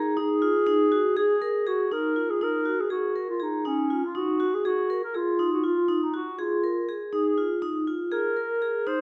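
Urgent and hypnotic, this short cut from a longer contemporary chamber piece moves in an uneven 7/8 at 242 BPM counted in eighths, settling in Eb minor with the harmony shifting near 7.1 seconds. A dark, distant clarinet carries the melody in a classical solo style, while a vibraphone played with medium hard mallets spins metallic, ringing arpeggios with a slow motor vibrato, both heard up front throughout the full 9 seconds. The pair sits in a wet recital hall, and the clarinet has a roomy quality.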